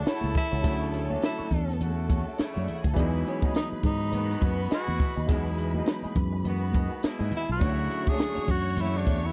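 A dry, close 1970s-style studio sound frames this smooth, lush soul excerpt, where a breathy, whispered tenor saxophone solo with scooped notes carries the melody over a round, punchy fingered electric bass and an up-front cocktail drum kit with a high-tuned snare, while a bowed string section with portamento sings a second line, a mellow horn section adds soft stabs, a grand piano with long sustain and a slightly broken-up guitar riff with wah and harmonic tremolo sit in the background, and very quiet, bright congas patter beneath chords moving from Dmaj9 to Emaj9 and back.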